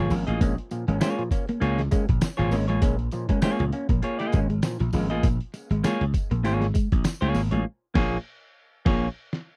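Slap bass anchors this sly, driving funk excerpt, bright and growly, sitting up front with a punchy, amped bite as it holds the low end in Bb minor on a Bbm7 chord. At 99 BPM in 4/4 with a light swing on the sixteenths, a lo-fi sampler-style drum kit pushes things along, its pitched-down, muffled sound giving a thumpy kick, a medium-tuned snare, hi-hat and crash a compressed, tape-softened character. One clean electric guitar plays a picked, warm-toned accompaniment up front, while a second, twangy and compressed, repeats a low riff in the background until about 7.6 seconds. An overdriven clav adds stringy, percussive stabs through a combo amp with phaser and tape echo, dropping out at 5.2 seconds, and a jingly tambourine sits quietly behind the band. The close, dry 1970s-style studio sound keeps every part tight, and the band hits an accent from 7.7 seconds before a drum fill starting at 8.9 seconds closes the passage.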